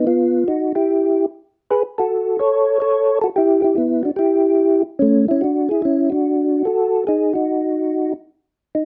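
A swung 4/4 pulse at 145 BPM carries this smoky, late-night jazz fragment, cut from a longer piece, where a percussive tonewheel organ plays solo from 0.0 to 8.8 seconds, ranging from A3 to C#5. Its soft, flute-like, mellow voice has second-harmonic percussion, chorus vibrato and a slow rotary speaker, and sits up front in close, detailed sound with light reverb. The harmony moves through Badd11, F#m, E5, Dmaj9 and D#dim, broken by brief unharmonized gaps.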